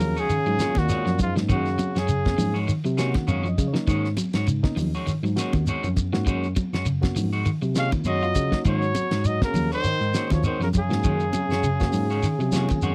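A breathy, whispered trumpet carries the melody up front over a veiled, bucket-muted trombone second line from 0.0 to 2.6 seconds and again from 7.8 seconds in this joyful, funky afrobeat excerpt at 101 BPM in Ab mixolydian, while a reedy electric piano adds background accompaniment and fills, a slightly broken-up guitar picks arpeggios through spring reverb, a clean guitar plays stabs, a tine electric piano holds the bass, and a damped 70s drum kit with a fat snare and dark cymbals drives a swung groove with very quiet, high-tuned congas and a grainy shekere, all in a dry, close 1970s-style studio sound.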